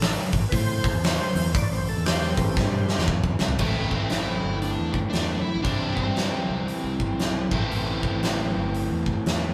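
Recorded with light reverb as a band playing live in one room, this heavy, brooding slice of swung blues rock and southern rock opens with a gritty, thick organ featured through a slow rotary speaker and chorus vibrato, with key click. Growling overdriven bass and a huge arena drum kit with a punchy kick and a fat snare play throughout, and a drum fill carries into 3.6 seconds. There, a bright, crunchy double-tracked rhythm guitar takes up the riff up front, while a dark, smooth lead guitar sits in the background until 7.5 seconds.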